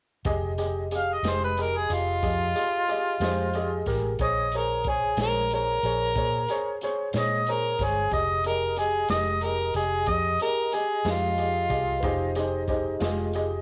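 Slow blues in F minor at 61 BPM in 12/8, brooding and soulful, cut from a longer piece and moving from Fm7 to Bbm7 and back. A mellow harmonica carries the jazz-style melody up front from 1.0 s, its scooped notes and light vibrato roughened by overdrive. Beneath it sit a dark, round, foam-muted electric bass, a gritty, saturated breakbeat kit of hi-hat, kick and snare, and clear grand piano chords with long sustain, while a woody upright piano adds a brief second line at 2.9 s and again near 12.0 s, all within a home cassette recording with light reverb and studio ambience.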